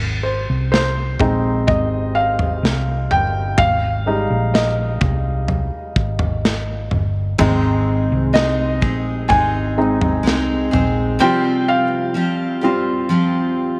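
Heartbroken and emotional, this slow pop ballad at 63 BPM is cut from a longer piece, with a soft, intimate felt-muted upright piano up front carrying a solo throughout over a round, punchy hollow-body fingered electric bass and a dark, smooth studio drum kit with punchy kick, medium-tuned snare and toms that stop near 11 seconds, as a full-bodied picked steel-string acoustic guitar enters with arpeggios at 7.4 seconds, all in light small-room reverb as the harmony moves from Ab to Csus4 at 11.2 seconds.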